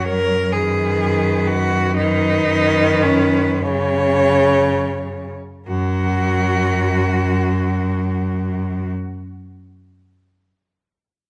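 Four bowed cellos, each played by a single musician with vibrato, carry this tender, serene classical fragment, with the second line and the bass sitting up front. The melody sings high on the top cello between A#4 and C#5 with a focused, smooth-topped tone, while the second line moves between C#4 and A#4 with a smooth, even tone. Beneath them, one cello holds a low accompaniment between C#3 and F#3, and the bass rests on a deep F#2, both sounding rich and focused. In 6/8 and F# major, the pulse drifts freely at 28-43 BPM in dotted quarters, slowing down through the opening 5.7 seconds over a Badd9/F# harmony before settling onto F# for the closing passage. All four parts play together until 8.9 seconds, captured by close, detailed microphones in a recital hall with a moderate 1.6-second reverb.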